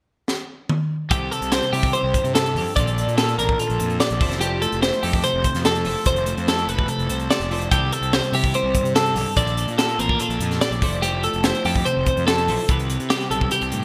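A crisp fusion drum kit opens this bright, playful math rock and midwest emo piece with a fill at 0.3 seconds, its high-tuned snare, tight kick, hi-hat and toms sitting up front with a saturated, gritty edge and gated reverb in a pumping small room. At 1.1 seconds two clean, picked twelve-string electric guitars enter together, one set forward and picking accompaniment across a broad register while the other spins arpeggios high on the neck, both compressed and shimmering with a subtle chorus. A fuzz-drenched fingered electric bass arrives at the same moment, direct and amped with overdrive, anchoring the low end. The straight 4/4 groove moves at 145 BPM in C major, cycling through C6, Bbmaj7 and Fmaj7 before settling on Cmaj7 near the close. Moderate plate reverb and a bright 1980s-style digital sheen give this passage, cut from a longer piece, a glossy, sparkling finish.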